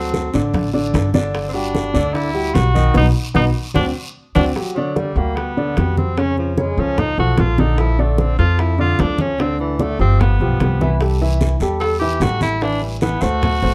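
A clear tenor saxophone with light vibrato and scooped notes, set in plate reverb, carries the melody and takes a solo from 4.6 s in this sunny, sophisticated Afro-Cuban jazz excerpt at 149 BPM. It rides over an intimate concert grand piano with audible action noise, a woody, thumpy pizzicato upright bass up front, and background congas and high-tuned bongos, while a raspy guiro plays until 4.4 s and returns at 11.0 s, within a dark, lightly reverberant production.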